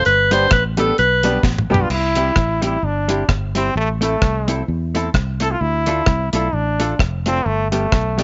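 A skipping ska shuffle at 130 BPM in 4/4, with a light swing on the eighths, sets an upbeat, joyful mood in C major in this short cut from a longer piece. A bright alto saxophone with pop-style vibrato opens up front as a brief solo, giving way, as a drum fill runs between 1.4 and 1.9 seconds, to a brilliant, punchy trombone that carries the melody with its own vibrato for the rest of the passage. Underneath, a dark, round fingered electric bass with a foam-muted, amped tone sits up front beside a deep reggae drum kit of dry acoustic character, featuring a high-tuned snare, tight kick, rim clicks, hi-hat, toms and crash. A clean, compressed hollow-body jazz guitar adds dark accompaniment, while a woody upright piano, intimate and in the background with audible action noise, contributes stabs only through the first couple of seconds. The harmony moves from G to C, Am, Dm and back to G, and the whole is framed by light reverb and small room ambience with a soft, rolled-off top end.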